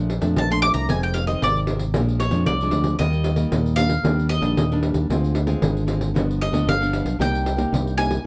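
A straight 4/4 pulse at 114 BPM drives this lively, yearning samba and choro passage, carried by a jingly, compressed and saturated pandeiro played with soft hands, a direct, up-front fingered electric bass and a small, warm, fingerpicked nylon-string guitar. A bright bowl-back mandolin, picked on double strings and placed up front, takes the solo melody from 0.4 s over changes that move from Bbmaj7 through Ebmaj7 and a Dm7b5 to G7 turn toward Cm7. Cut from a longer piece, the recording is close and detailed with little reverb.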